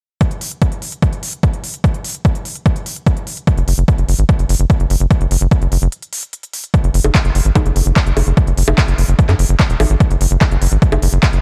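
The electronic kick drum leads this driving, psychedelic trance excerpt at 147 BPM in straight 4/4, a punchy, overdriven, layered kick placed up front that sounds re-recorded in a large room. Around it, a big-room dance drum kit of bongos, handclaps and crisp hi-hats sits lower in the mix, also overdriven and carrying that large-room character. At 3.6 seconds a tight sequencer bass enters, a sawtooth and square-wave tone with a fast attack and a decaying filter pluck, mellow yet driving and placed up front, moving between E1 and F#2. A brief break at 5.9 seconds gives way to a new section at 6.7 seconds, and the drums and bass carry on to the end of this fragment of a longer piece. The production is dark and dry, with little reverb.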